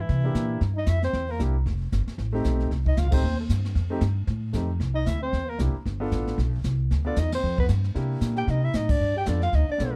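Small-group swing and bop jazz at a brisk 229 BPM in C major, sophisticated and playful, with a swung 4/4 feel over a blues-tinged C7, F7 and G7 progression in this short cut from a longer piece. A mellow soprano saxophone carries the melody with light vibrato, scooped notes and a plate reverb sheen, while a growling, raspy trombone plays a second line beneath it, and a woody pizzicato upright bass sits up front with a jazz kit played with brushes, boomy kick and dark cymbals. A concert grand piano adds accompaniment with deep, natural tone, and the band hits accents at 3.1, 7.3 and 8.9 seconds in a dark, dry production.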